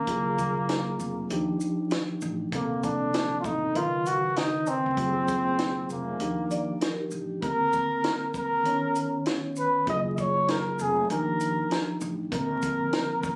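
Recorded on a phone in the room, this short cut from a longer jazz-hop piece carries vinyl crackle, club reverb and compression around a cool, smooth mood in Bb major at 98 BPM, with a swung 16th-note feel in 4/4. Up front, a breathy flugelhorn carries the melody in a whispered, intimate jazz style with vibrato and a soft attack, its tone given a slapback echo. Beneath it, a mellow tine electric piano heard through its built-in speakers supplies clean accompaniment over lush major-ninth harmony, while a woody, dark pizzicato upright bass sits low in the mix. A compact cocktail drum kit from a tight booth keeps time with hi-hat, shaker, a punchy kick and a high-tuned snare. Briefly, from 6.5 to 7.4 seconds, a vibraphone with medium mallets adds a metallic, ringing second line with slow motor vibrato, just as the opening section gives way to the second at 7.4 seconds.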